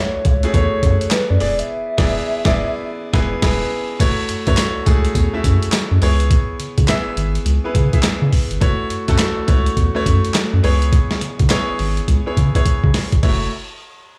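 A dry, close studio sound frames this confident, slick new jack swing cut, with swung sixteenths and a gritty, compressed, pitched-down sampler-style drum kit up front, its thumpy kick, snare, hi-hat, handclaps, tambourine and crash carrying the grit of a large room. A hollow, woody synth lead with chorus, vibrato and digital delay carries the melody only until 3.4 s, while a brilliant grand piano supplies accompaniment and a deep, round analog bass anchors the low end. The band hits an accent together near the start, and a drum fill closes the passage from 12.1 s.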